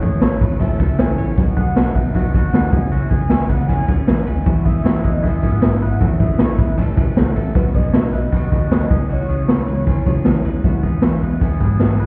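Youthful and breezy, this jangly indie pop piece moves in a straight 4/4 and is cut from a longer piece. A raw garage drum kit sits up front with a boomy kick, a medium-tuned snare, hi-hat and ride, all gritty and saturated, while a dark, round, foam-muted electric bass punches underneath. A very quiet fingerpicked steel-string acoustic guitar and a bright, twangy clean electric guitar playing phaser-tinged arpeggios fill out the middle, joined by a reedy, mellow electric piano with fast tremolo that adds a fill from 6.4 to 7.6 seconds. A velvety synth lead carries the melody with chorus and analog delay until 10.4 seconds, over faint sustained string-machine cellos, and a jingly tambourine is barely audible from 1.4 seconds. The whole mix sounds muffled, as if heard through a wall, with a stone room reverb.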